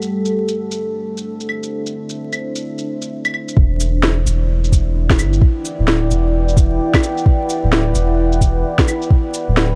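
Swung percussion of electronic shaker, claves, cabasa and a woody snare opens this nocturnal, ghostly future garage excerpt over a deep, detuned sawtooth pad with chorus, reverb, 12-bit sampler grit and sidechain pumping moving from D9 to Em9, until at 3.6 seconds a soft electronic kick and a round, pumping dub sub bass arrive up front, all beneath a light haze of vinyl crackle.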